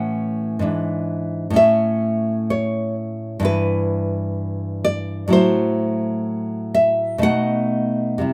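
A rough home-demo sound with light reverb frames this brief, melancholic and passionate fragment of a romantic solo classical guitar piece, where a single fingerpicked nylon-string guitar, bright and full-bodied and placed up front, carries the whole 8.3 seconds in a free, rubato feel.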